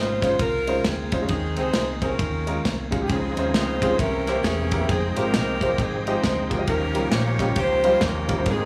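A clear, close-miked saxophone section carries the soulful, hopeful melody up front with jazz-style vibrato, over an intimate baby grand piano whose action noise can be heard and a dark, round hollow-body electric bass. A modern drum kit with a punchy kick, a medium-tuned snare and ride cymbal drives the uptempo gospel swing, and from 3.1 seconds a gritty, overdriven tonewheel organ adds thick sustained chords in the background through a slow rotary speaker. The brief cut sits in a large studio reverb over rich harmony moving from Dbmaj9 through C7b9 and Fm9 to Eb9.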